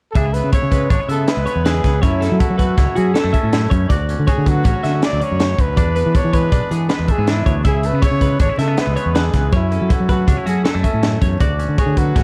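A close-miked trumpet with vibrato and scooped notes carries a bright, wistful melody over crisp, gritty fusion drums, a growling overdriven bass, a twangy clean guitar and a chorused twelve-string electric guitar playing arpeggios in this math rock and midwest emo excerpt at 160 BPM in 5/4, moving through C#m7, F#m7, Dmaj7 and E7 with a dark production, little reverb and vinyl crackle.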